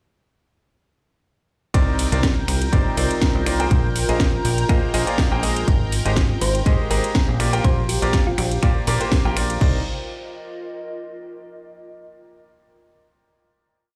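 Piano house at 122 BPM in C minor, energetic and bittersweet, where a bright concert grand piano riff, a punchy plucky analog bass, a tape-warm four-on-the-floor electronic kick and a house drum kit with cracking snare, metallic hats, finger snaps, ride and crash all drive a drop that starts at 1.7 seconds over a silky analog string pad, joined at 2.6 seconds by a warbling, nostalgic tape-like pad. A round, tine-like thumb-piano-like synth pluck adds short phrases from 6.4 seconds, and the tape-like pad rings out on a final chord from 9.6 seconds in a stone room.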